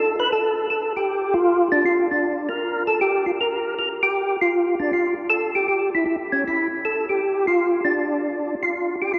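A swung 4/4 pulse at 157 BPM carries this soulful, smoky jazz fragment in D minor, where a lone tonewheel organ plays for its full 9.2 seconds, its mellow, round tone sharpened by third-harmonic percussion and colored by chorus vibrato and a slow rotary speaker, sitting up front in a drenched cathedral reverb that lingers for seconds.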